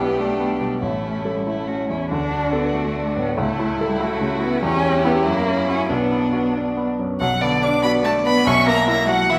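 The clear grand piano sits present and up front, carrying the accompaniment from its low register up to the middle of the keyboard throughout this stormy, restless classical-period movement for piano quartet. It moves quickly at 95 BPM in dotted quarters in a straight 6/8. Above it, a single violin carries the melody with a rich, expressive tone, vibrato and portamento. A second violin plays a smooth, even inner line, while the bowed cello adds its own expressive second line with a soft attack, vibrato and sliding portamento. The harmony starts on G/B and passes through A, D and A/C#; then, as B minor takes hold from 4.6 s, it moves through C#dim/E and F#7 to settle on Bm, and a new section begins at 7.2 s. The quartet is heard in a church or concert hall with a wet recital-hall reverb that lingers for 1.7 s, and the passage is cut from a longer piece.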